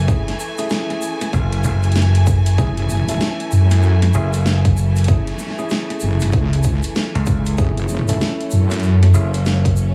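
Playful and funky, this glitch hop excerpt at 96 BPM in F# minor swings over a single F#m9 chord, with an overdriven, punchy slap bass and a punchy electronic kick up front, a dubstep kit's huge snare and metallic hats, a grainy egg shaker, bright tine electric piano stabs with tape echo and sidechain pumping, lush bowed strings holding sustained chords under the same pumping, a heavy, detuned sawtooth wobble bass with chorus and tube saturation entering at 2.6 seconds, and vinyl crackle throughout.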